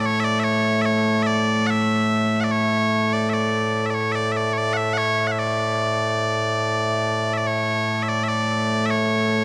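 A dark, roomy recording with a huge ambient reverb frames this stirring, ceremonial slice of Scottish pipe music in A major, where loud, piercing solo bagpipes play up front in a continuous 3/4 line at 73 BPM, spanning A2 to F#5 across the full 9.4 seconds cut from a longer piece.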